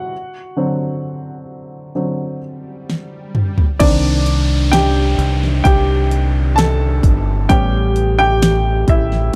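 A woody upright piano opens this tender, heartfelt pop ballad at a slow 65 BPM in 4/4, playing a solo over a D7 chord with a close, short-sustained tone. An electronic swell rises in at 2.7 seconds, and a drum fill from a punchy, produced kit leads the piece into its second section at 3.8 seconds. There the harmony moves to Cmadd9 and later A7, as a deep, round fingered electric bass and a fat-snared drum kit sit up front beneath the continuing piano solo. A dark French horn section with a smooth top holds sustained chords in the background, while an electronic downlifter adds a subtle sweep. The production is dark and warm with little reverb, and this is cut from a longer piece.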